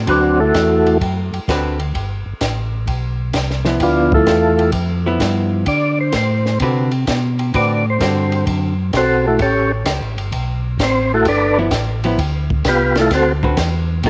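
A percussive tonewheel organ carries the melody in this greasy, soulful soul jazz organ trio excerpt at 129 BPM in swung 4/4. Its round tone has second-harmonic percussion, slow rotary speaker, chorus vibrato and cassette tape grain, and after a brief opening phrase it returns at 3.8 seconds to solo over D13, G13 and A9 chords in D mixolydian. Underneath, a mellow organ bass with key click, slow rotary and tube saturation holds the low end. A clean, compressed, picked hollow-body archtop guitar comps until 8.7 seconds and returns at 11.6. A compact cocktail kit of dry, punchy kick, high-tuned snare, hi-hat and dark ride cymbal, also on cassette, keeps time, and light reverb frames the home cassette recording.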